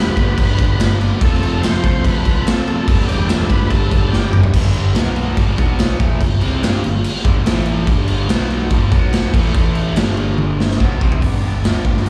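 A gritty overdriven tonewheel organ carries the melody from the first moment, turning on a slow rotary speaker with slapback and tape echo, while a very quiet, dark octave-fuzz lead guitar adds a second line an octave higher until both drop out at 4.4 seconds. This is driving, swaggering classic rock in G major at 144 BPM, a short cut from a longer piece. Two bright, double-tracked picked guitars, one crunchy and one a hollow-body semi-hollow, sit in the background playing the riff with slapback echo, and the semi-hollow stops at 11.2 seconds. Underneath, a round, punchy fuzz bass played with the fingers adds dark overdriven weight, and a saturated garage drum kit sits up front with a punchy kick, medium-tuned snare and a pumping stone-room sound, throwing in fills just before 4.5 seconds and again near the end. After the opening G and F chords, the second part leans on power-chord moves between G5, A5 and B5 before settling back on G, all heard as a live club gig through the venue's PA with small-room reverb.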